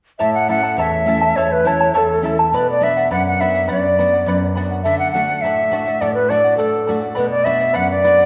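The excerpt opens at 0.2 s with a mellow, hollow cane quena carrying the melody up front, joined at once by fingerpicked charango and nylon-string guitar. This is earthy, festive Andean folk in 2/4 at 103 BPM with a straight feel, moving through A, Bm, D and back to Bm. The end-blown quena sounds airy, with vibrato, tongued notes and rolled-off highs, sitting between A4 and F#5. The charango's double courses give a shimmering sparkle, some strings doubled at the octave, while the guitar supplies a full-bodied, deep classical bottom reaching down to E2. The trio rings out in a concert hall with a long, wet reverb tail of 2.0 s, and all three parts stop together at 8.3 s, the fragment cut from a longer piece.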